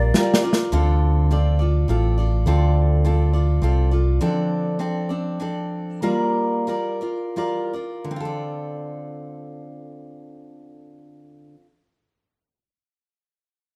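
A brief snare fill opens this cut from a longer acoustic folk piece, its medium-tuned, small-room crack sitting up front for less than a second alongside a picked steel-string jumbo guitar and a fingered electric bass. The reflective, wistful mood unfolds in a gentle 3/4 lilt, with the guitar's full-bodied picking carrying the accompaniment through chords such as Dm7, F6 and Bb6. The amped bass adds a dark, round low end close to the listener before dropping out at 4.2 seconds, where the pace begins slowing down until 8.1 seconds. From there the guitar continues alone into a new section, ringing on until 11.8 seconds. Moderate studio reverb lends some space to what otherwise feels like a rough home demo mix.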